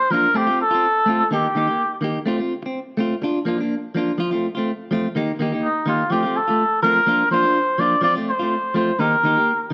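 Bathed in moderate echo-chamber reverb with small-room ambience, this carefree, danceable highlife excerpt at 125 BPM in F mixolydian puts a bright, twangy, clean electric guitar up front, picking an accompaniment over F, Eb and Bb from 0.1 seconds, while a cup-muted trumpet with a veiled, vintage jazz tone and vibrato carries the melody, falls silent at 2.0 seconds and returns at 5.6 seconds.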